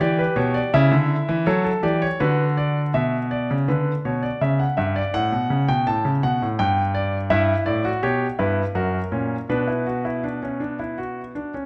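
In a straight triple metre, this lively, elegant excerpt from a baroque-style three-part fugue gives a solo grand piano an intimate, up-front sound, clear and natural with audible action noise, ranging from F#2 to A5 in a recital hall whose moderate reverb rounds off its 11.7 seconds as the harmony settles from Em7 through F# onto Bm.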